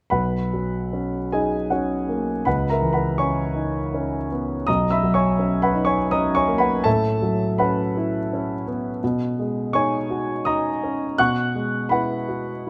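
A rubato 3/4 lilt drifting between 74 and 86 BPM carries this serene, dreamy impressionist solo piano piece in B major, a short cut from a longer work. A clear, polished grand piano sits up front with long sustain, spanning B1 to F#6 as it moves through rich extended harmonies, from Bmaj9 at 0.1 seconds through C#m9, A69 and B69 to F#9sus4/B at 11.2 seconds. Close, detailed microphones and light reverb give the sound an intimate, glowing presence.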